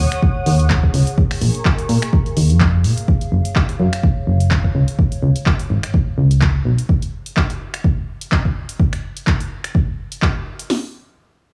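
A silky, detuned string pad with ensemble chorus and a filter sweep opens this joyful, euphoric piano house passage alongside a round, up-front FM bass and a warbling, lo-fi pad that sits dark in the background and fades, all three pumping with the sidechain. Two punchy analog drum machines join almost at once, one carrying kick, snare and hi-hat and the other adding finger snaps, handclaps and more hi-hat with a tape-warm grain, all over a gently swung sixteenth feel. The string pad drops out at 3.1 seconds and the bass at 6.7 seconds, with the nostalgic pad ending soon after, leaving the drums alone in a dry, small room until the cut.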